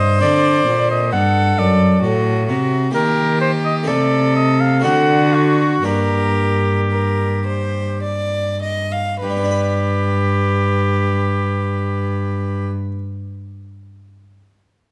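From the opening instant a clear, lightly vibrato oboe sings the melody up front over a nasal, airy gut-string violin second line, a rich, bowed period cello bass and a brilliant, plucked harpsichord in the background, all set in a flowing, solemn baroque-style sonata movement in triple time that slows between 1.6 and 9.2 seconds before settling onto G for a new section at 9.2 seconds, heard closely in a moderate recital hall as a fragment of a longer piece.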